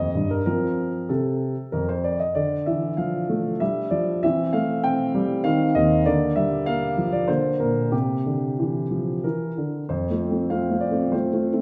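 A warm, open grand piano plays alone and up front in a wet recital hall, carrying a graceful, elegant passage cut from a longer classical-period sonatina in three-four time with a rubato feel, moving into a new section at 9.9 seconds before breaking off at 11.6 seconds.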